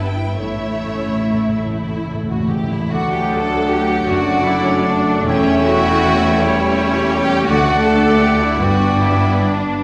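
A tender, serene excerpt from a slow romantic orchestral movement in D major and a rubato 6/8, opening with lush, vibrato-rich violins carrying the melody over a softly attacked second violin line, background violas and cellos, lush double basses, and very quiet ringing harp arpeggios, while round, soft-mallet timpani add a fill from 0.4 seconds. At 2.9 seconds the winds and brass join: an airy, bright flute and a distant oboe on second lines, a mellow bassoon in the background, and a very quiet, dark horn section holding sustained chords. The hall reverb lends a roomy glow, and the timpani return briefly at 7.5 seconds as the harmony settles toward Gmaj7.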